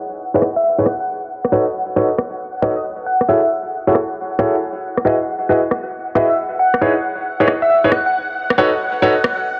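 A silky string machine under phaser, ensemble chorus and a filter sweep opens this bouncy, soulful two-step UK garage cut at 136 BPM with sustained ninth chords. It is soon joined by brilliant concert grand piano stabs with dub echo, an up-front, tape-warm electronic rim click, and a round, FM-toned struck synth lead carrying a gentle melody from 0.6 s and again from 6.2 s, while the mix sits in plate reverb and a heavily compressed, low-passed radio sound with vinyl crackle.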